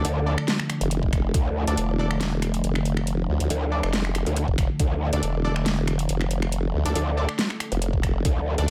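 A lightly reverberant, heavy mix opens this chaotic fragment of half-time wobble dubstep, set in D minor at 139 BPM in 4/4 with a 54% swing on the sixteenths, all resting on a single Dmadd9 chord. Two up-front basses carry the weight: a growl bass holding D2 with a detuned, saturated, bright snarl through chorus and overdrive, and a formant-sweep wobble bass ranging from E1 to D2, its sawtooth edge pushed through the same chorus and overdrive. Behind them, an evolving wavetable pad sustains mellow, warbling chords from D3 to A4, colored by phaser and reverb and pumped by sidechain. A bold, nasal orchestra-hit-like synth stab punches between D4 and D5, carrying its own reverb and delay. The drum kit sits forward with a huge snare, metallic hats and finger snaps in a tape-warm studio reverb, while a knocking electronic kick lands only at 1.0, 4.5 and 7.9 seconds.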